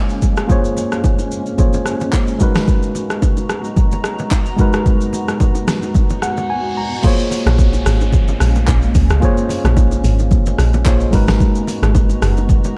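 Opening on a worn, slightly out-of-tune tine electric piano, amplified through a combo amp, and a blurred, evolving granular pad carrying its own reverb and sidechain pumping, this excerpt of amapiano settles into a hypnotic, deep mood at 110 BPM in 4/4 with a light 16th-note swing, in Bb phrygian. Just after, a layered, tape-warm deep house kit arrives up front with a deep kick, fat snare, handclaps, hi-hat, rim click and shaker, while close, dry congas and bongos played with hard hands sit in the background. The harmony moves between Bbm9 and Abm9, and around 6.0 seconds the electric piano plays a fill as a reverse cymbal and downlifter lead into a short break. At 7.0 seconds the drop lands, and half a second later a round, percussive log drum bass with a fast attack and decaying tail enters, placed up front beneath the groove. The production is dark and dry, with little reverb beyond the pad's own.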